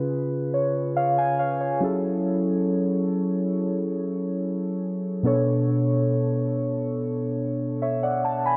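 R&B in F# minor at a slow 70 BPM, this late-night, sensual fragment features a single part: muted, felt-like synth keys playing alone across the full 8.6 seconds, moving from C#7 to F#m9 at 1.8 seconds and Bm7 at 5.2 seconds. The keys sound intimate and vintage, with a warbling chorus, a dark ring-modulated edge, fast attack and decaying notes, and they sit up front in a light reverb.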